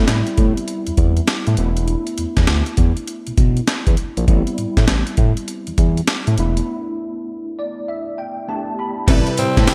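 This slick, bouncy new jack swing excerpt opens with a clean tine electric piano, run through a combo amp and thickened by ensemble chorus, laying down Am9 and E7sus4 chords over a smooth, mellow synth bass that sits up front with a sawtooth edge and a touch of vibrato. A compressed, gritty breakbeat kit arrives at 0.1 seconds, its thumpy kick and high-tuned snare drenched in gated reverb alongside hi-hat, tambourine and crash cymbal, all pushed forward in the mix with a swung sixteenth-note feel. A break begins at 6.7 seconds, and the electric piano plays a fill from 7.3 seconds over the E7sus4 harmony. At 9.1 seconds, as the chords land back on Am9, a lush bowed string section adds stabs, and a raspy, growling tenor saxophone enters at 9.4 seconds, close-miked and bright, just before the cut. Light digital ambience frames the glossy, 1980s-style production.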